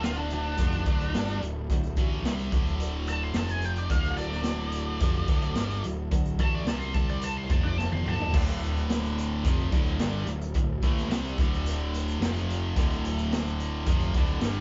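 Captured as a band playing live in one room with light reverb and a muted top end, this confident, sunny classic rock excerpt opens with a wah-tinged octave-fuzz lead guitar solo over a boxy parlour steel-string acoustic guitar with finger squeak tucked in the background, a tight double-tracked distorted guitar riff, an up-front overdriven picked electric bass and a raw garage drum kit with dark cymbals, a punchy kick and a pumping room sound; after a drum fill at 7.8 seconds, the solo and acoustic stop at 8.3 seconds as a bright, cranked stack guitar riff joins the others until 14.6 seconds.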